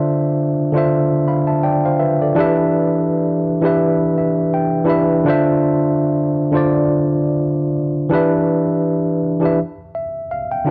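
A home cassette recording with light reverb and a digital ambience gives this brief, hazy hip hop fragment a reflective air. At 83 BPM in 4/4, with a swung 16th-note feel in D dorian, a solo tine electric piano sits up front, worn and slightly out of tune yet clean and direct, moving between Dm7 and Em7 before landing on a rootless Dmadd9 at 9.6 seconds. Spanning D3 to B5, the piano carries its own cassette tape colour across the full 10.7 seconds.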